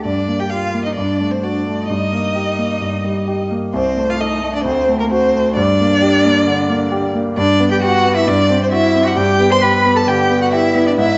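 Graceful and lively, this quick classical-period fragment for piano trio moves with a rubato feel. An expressive, rich violin carries the melody up front with vibrato, portamento and soft-edged bowing, while a close, warm cello shapes a second line in the same singing manner, and a natural-sounding grand piano, also up front, supplies the accompaniment, all set in the wet glow of a recital hall with a mellow, rounded top end.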